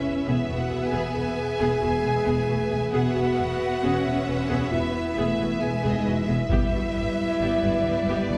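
Lush bowed violins open this cinematic orchestral excerpt, the first section carrying the melody with vibrato over a smoother second line, as mellow French horns hold sustained chords and focused, close-sounding cellos supply the low end. Violas enter in the background at 0.3 s alongside clear, intense double basses placed up front, the ensemble set in a reverberant concert hall heard from further back. At 6.5 s the harmony moves from E to G and a taiko ensemble strikes in with heavy sticks, giving an adventurous, triumphant weight before the cut at 8.4 s.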